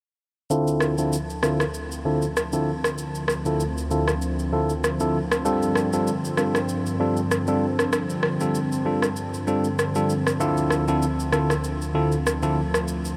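Sunny and romantic, this afrobeats excerpt moves at 97 BPM in 4/4 with a light swing on the sixteenths, drifting from Dm7 to G7sus4 at 5.5 seconds and back to Dm7. A bright, bell-like tine electric piano sits up front playing clean accompaniment, while a smooth, chorused analog pad with a sawtooth edge and slow attack holds mellow sustained chords beneath, and an electronic shaker and rim click give close, small-room percussion. A filter sweep runs across the whole passage, and a huge ambient reverb soaks the mix in a dreamy haze.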